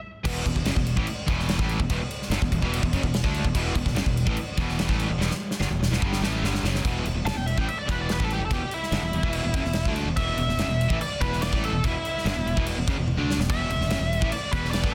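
A driving, straight 4/4 pulse at 145 BPM opens this menacing, aggressive hard rock excerpt in E dorian, with the guitars entering at 0.2 seconds over an E minor chord and the bass and drums joining at 0.3 seconds. Two cranked stack guitars and a very quiet, double-tracked distorted electric guitar play a picked, overdriven riff that sits in the background, while a growly, punchy fingered bass played direct anchors the low end. Up front, a big acoustic rock kit with a punchy kick, medium-tuned snare, toms and bright crash cymbals carries the momentum, rolling into a drum fill from 5.2 to 6.9 seconds. At 6.9 seconds the harmony shifts to an E5 power chord, and a biting lead guitar takes a solo at 7.3 seconds, its overdriven tone rounded and forward, with a slapback echo. Light reverb and a small room ambience frame a dense, heavily limited modern master.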